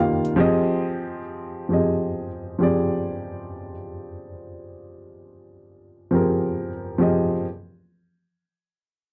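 Hip hop in a hazy, melancholic mood, this brief cut from a longer piece features a dark upright piano, mellow, woody and up front with short sustain, accompanying through an Fm7 from 0.4 seconds over a swung sixteenth-note feel, its tone softened by a low-pass filter and set in light reverb within a dark, warm production that keeps the top end rolled off.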